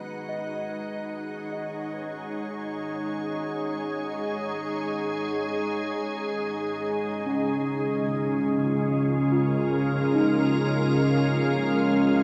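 In free time, this peaceful ambient fragment in B lydian, cut from a longer piece, fades in on a pure, organ-like pad of sustained, chorused chords up front, moving from B6 to A#m7/C# at 6.9 seconds, while a delicate, bell-like celesta traces arpeggios in the background through tape echo, with both parts carried on shimmer reverb inside a dreamy, plate-drenched mix.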